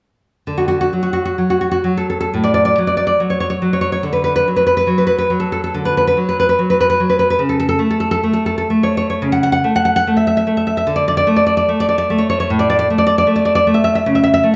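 A woody, full-bodied nylon-string guitar with an old-strings character plays fingerpicked solo in this warm, sunny romantic excerpt in D major, moving with a rubato feel between 59 and 78 BPM from 0.5 to 14.6 s, spanning A2 to F#5 up front in a moderate recital hall reverb.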